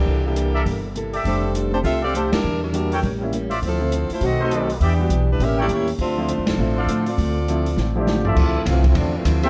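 A brisk swing at 202 BPM in 4/4 drives this dramatic, brassy big band passage in D minor, cut from a longer piece, with a woody, thumpy pizzicato upright bass up front, a quiet picked parlour guitar and a natural grand piano in the background, and an open jazz kit with dark cymbals and a boomy kick. A tight, close-miked saxophone section with light vibrato carries the melody until 8.0 seconds, while a smooth-topped trumpet section adds stabs and the band hits accents at 2.3 and 6.4 seconds. After a drum fill, a clear trombone section takes a solo from 8.4 seconds over a dark production with light reverb.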